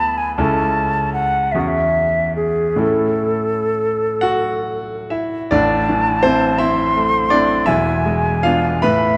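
Tender and warm, this romantic classical excerpt pairs a hollow, pure-toned concert flute carrying the melody with a clear grand piano accompaniment that sits up front and reaches into a deep bass. The flute's tongued phrases carry gentle vibrato, and the pair move through 6/8 with flexible rubato. At 5.5 s a second section brings a darker harmonic shade, all set in a moderate concert-hall reverb within a cut from a longer piece.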